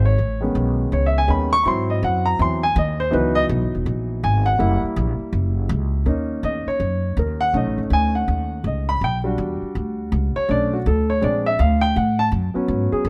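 A warm baby grand piano and an upright bass open together, playing a swinging, energetic big band swing feel at 163 BPM in B major, with a light swing on the eighth notes. This short cut from a longer piece runs about 13 seconds across two matching sections, the second starting at 6.1 seconds. The piano carries the accompaniment and steps forward as a solo throughout, its natural, short-sustained tone sitting up front. The plucked upright bass is woody and growly, with a dark, thumpy steel-string character, also placed close in the mix. Rich jazz harmony moves quickly, from Amaj9#11 and G#7b13 through C#m11 and F#7b9 before settling toward Em9, Bm7 and A6. The sound is dry and intimate, captured by close, detailed microphones with little room reverb.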